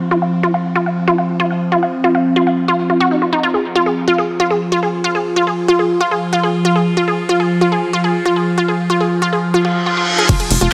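A morphing wavetable pad with phaser and a filter sweep opens this intense, hypnotic psychedelic trance excerpt in F minor at 140 BPM, joined at once by a detuned, wave-folded unison pluck riff with dub echo, both pumping to the sidechain in a lush hall reverb, until a reverse cymbal rises from 9.6 seconds into an impact at 10.3 seconds, where an overdriven knocking kick, crash and bright hi-hats land and a dark, punchy sawtooth sequencer bass on F1 arrives at 10.5 seconds.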